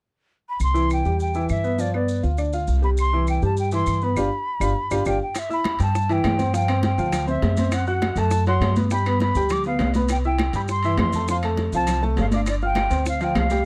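A thumpy, woody upright bass with gut strings sits up front in this festive, joyful salsa excerpt, alongside a clear grand piano and an airy, hollow jazz flute with vibrato and a crisp chiff carrying the melody. Dry background claves and distant, grainy maracas in a large room keep time, and after a band accent at 4.2 seconds, bright, high-tuned congas, round, low-tuned bongos and ringing, distant timbales join at about 5.4 seconds. The close, dry studio sound has a 1970s character, and the harmony moves from plain major and dominant chords to richer seventh, sus and thirteenth colours in the second half.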